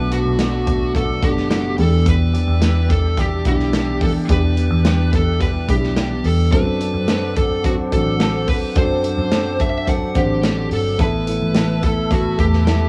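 Piano-driven pop in E minor at 108 BPM, this dramatic, earnest excerpt from a longer piece sets a felt-muted upright piano, soft and intimate with audible action noise, under a dark, fuzz-distorted lead guitar melody bathed in plate reverb, while a small flute group holds pure, vibrato-tinged sustained chords in the background. A bright, compressed clean electric guitar recorded direct plays a chorused riff, a round, foam-muted picked bass anchors the low end, and a modern studio kit with punchy kick and medium-tuned snare keeps a straight 4/4 from 0.1 seconds. The harmony moves through Bm7, Em7, D7 and Asus2, all captured with the light reverb and small-room ambience of a cassette home recording.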